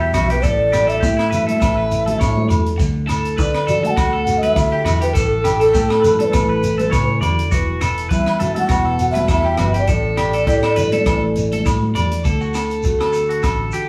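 A lightly swung 4/4 groove drives this sunny, joyful highlife guitar-band excerpt, where an end-blown bamboo shakuhachi sings the melody with breathy vibrato until 11.6 seconds over fingerpicked, woody nylon-string guitar, bright, twangy electric guitar arpeggios at the edge of break-up with phaser, a dark, foam-muted round bass, a compact cocktail kit with punchy kick, hi-hat and rim click, ringing agogo bells, distant high-tuned congas that stop at 12.1 seconds, and a grainy shekere in the background, the band playing together in one room with studio reverb.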